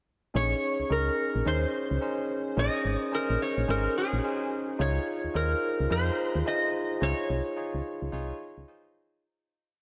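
A swung 16th-note groove at 108 BPM in 4/4 drives this short, bouncy and flirty new jack swing piece in Db major, tuned slightly flat, with a punchy, round FM synth bass playing a funky swung line with muted ghost notes under barky tine electric piano stabs in rootless, syncopated voicings. Over them a bright, nasal metal-body resonator slide guitar, played with fingerpicks and treated with lush chorus and delay, spins a free melody that never settles on a recurring motif. The harmony moves from Bbm11 to Dbmaj9 at 4.8 seconds, all three parts sit up front in a dreamy mix soaked in long hall reverb, and the piece fades out from 7.0 to 9.2 seconds.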